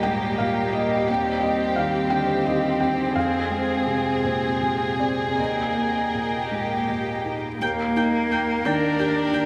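A felt-muted upright piano, mellow and up front with audible action noise, opens this tender, intimate neoclassical excerpt in Eb major alongside a close, sul tasto chamber violin section carrying the melody and a solo cello on a second line, both touched with tape echo, over soft sustained chords from a background string section, drifting in rubato 6/8 at 52-59 BPM until an airy-bowed viola joins at 7.6 s, within a dreamy mix soaked in cathedral reverb.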